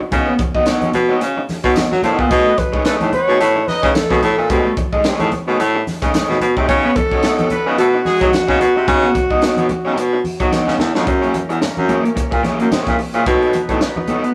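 Funk with an energetic, swung sixteenth-note feel, cut from a longer piece and captured as a rough rehearsal-room recording in a moderate stone room, where an overdriven, picked garage guitar and a clear, up-front baritone saxophone carrying the bass line sit over a crisp fusion kit with a high-tuned snare and punchy kick, plus ringing low-tuned congas and a very quiet, jingly tambourine. A breathy, whispered alto saxophone takes the melody from 2.3 to 10.5 s, while a vintage horn section with light vibrato and octave doubling lingers in the background through tape echo. A drum fill at 10.5 s leads into a closing passage that moves from F#9 to B9.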